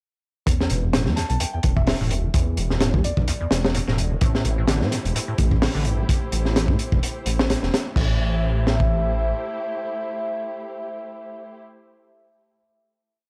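The drop opens at 0.5 seconds with a crunchy, saturated breakbeat kit of punchy kick, high-tuned snare, hi-hat and dark cymbals, alongside a rubbery, resonant acid bass riff with accents and slides under lush chorus. Above a rumbling, detuned saw bass in a dotted rhythm, a mellow brass ensemble fires sparse chord stabs through tape echo, while a soft FM bell adds short answering phrases in the background. The harmony moves from Em7 to Am7 in A minor. This is energetic, gritty breakbeat at 128 BPM with swung sixteenths. From 4.2 seconds a muted, veiled string section sustains chords with sidechain pumping, carrying the brass into a final chord from 8.0 seconds on a dry, cassette-toned hardware recording.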